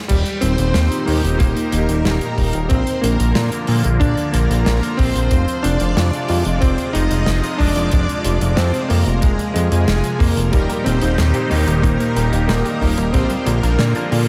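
Nostalgic and driving, this synthwave excerpt at 92 BPM sets a vintage electric grand piano melody with analog delay over a shimmering string-machine violin line, a swirling phased pad with sidechain pumping, and a fat, saturated sawtooth bass sitting up front, moving through Eb, Bb and Fm. A punchy acoustic kick and an airy country kit with crash, hi-hat and medium-tuned snare drive it along. At 10.5 s a very quiet, round detuned pluck arpeggio and nasal, brassy synth stabs with vibrato join in the background, all bathed in a dreamy cathedral reverb.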